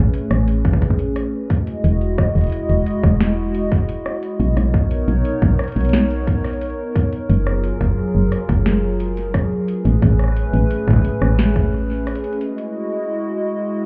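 A straight 4/4 pulse at 88 BPM opens this playful, intricate IDM excerpt in B major. A tight, tape-tinged electronic kick sits up front from 0.6 seconds, carrying studio reverb and a small-room character. Around it, a booming analog drum machine patters through cabasa, metallic hi-hats, rim clicks and a tonal snare, its dry hits set in studio reverb and digital delay. Underneath, a woody FM bass, round and dark with a fast, decaying attack, holds low notes from E1 to B1 until 12.2 seconds. A hollow, flute-like pad with a detuned, airy noise layer and chorus sustains mellow chords through Amaj9, Emaj9, Bmaj9 and F#maj9, lingering alone to 13.9 seconds. The whole mix sounds muffled, as if heard through a wall from a club, wrapped in light reverb and digital ambience.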